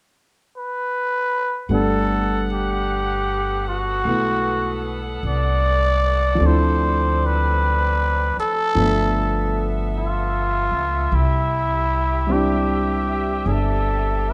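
Set in a moderately reverberant large studio, this romantic, tender jazz ballad excerpt swings gently in 4/4, opening with a close-miked cup-muted trumpet that plays the melody alone from 0.6 s in a veiled, raspy, growling voice with scooped notes and light vibrato. At 1.7 s the rest of the band arrives on a Gmaj9 chord: a woody pizzicato upright bass sits up front, a concert grand with deep, natural low end provides accompaniment, and a bright, tight saxophone section holds vintage-toned sustained chords in the background. The harmony moves through Dm7 and G13 before settling on C.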